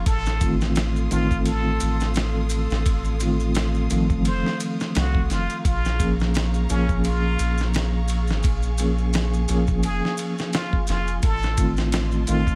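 A swung 86 BPM groove in 4/4 sets this smoky, cinematic trip hop passage in Bb minor, with a dusty, compressed sampler-style drum kit of thumpy kick, medium-tuned snare and ride entering at 0.1 s alongside faint maracas in the background, all over a deep, round dub sub bass sitting up front. A reedy, barky electric piano with light overdrive and fast tremolo carries the accompaniment through gritty 12-bit sampler crunch and tape echo, while a lush, bowed string section holds smooth sustained chords moving between F7/A and Bbm7. On top, a brilliant plunger-muted trumpet delivers a forceful, jazz-style wah-wah melody with vibrato, close-miked and coloured by the same grit and echo, all in light reverb.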